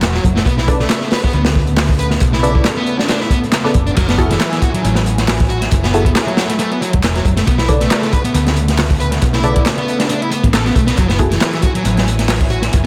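A crunchy, saturated breakbeat kit with a tight kick and dark cymbals sits up front from the start, joined by a quieter electronic house kit of handclaps and hi-hat, a round, punchy hollow-body fingered bass, a muted dub chord stab soaked in tape echo, and a lush, airy unison pad with chorus, phaser and sidechain pumping, while a thick fuzz guitar riff roughened by 12-bit sampler grit enters at 0.1 seconds, giving this raw, swaggering, echo-heavy breakbeat cut a drop at 4.0 seconds over Bm9 and F#m9 chords.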